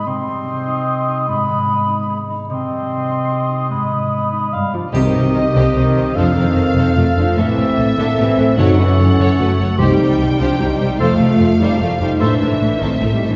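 A brisk 148 BPM in 3/4 with a straight feel drives this determined, swashbuckling cue from a heroic adventure film score in C harmonic minor, cut from a longer piece. It opens with a build-up in which a ringing, fingerpicked concert harp plays arpeggios in the background while a clear solo clarinet, a dark, distant cor anglais and an airy silver flute carry second lines over chords moving between Cm and Abm before a G7. The flute stops at 4.7 seconds, as a tight, dark French horn section enters with soft-attack sustained chords and the viola section adds smooth, even accompaniment. At 4.9 seconds the lush violin section takes the melody, with a second violin line, the expressive cello section in the background and the woody double basses anchoring the bass, as the harmony shifts through Cm, F, Am and F#m. Timpani struck with hard mallets mark that arrival and return at 9.8 seconds, joined at first by a very soft triangle, all set back in a wet scoring-stage reverb.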